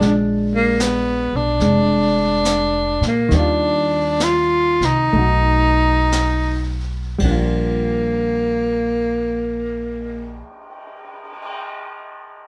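A late-night, intimate jazz ballad in swung 4/4, easing from 76 down toward 53 BPM over the first 7.2 seconds and settling into Bb major, heard as a short cut from a longer piece. Up front, a breathy tenor saxophone carries the melody with whispered vibrato, scooped notes and a soft attack, over dark, clean, fingered chords from a compressed hollow-body electric guitar and a woody pizzicato upright bass. Quieter still, a brushed drum kit with dark cymbals, a high-tuned snare and a boomy kick keeps time in a moderate studio reverb, ringing on alone until 11.5 seconds after the others stop by 10.6 seconds.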